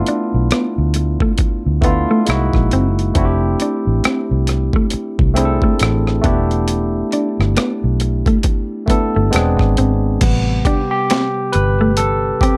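A barky tine electric piano, lightly overdriven through a combo amp with plate reverb, opens this late-night, soulful neo-soul R&B excerpt on a rootless G9, joined almost at once by a dark, clean fingered electric guitar as second line, a gritty, compressed boom bap sampler-style kit with a thumpy kick and high-tuned snare, and a round, punchy foam-muted vintage bass, all in a swung, dusky production before the electric piano takes a solo over Am7 at 10.2 seconds.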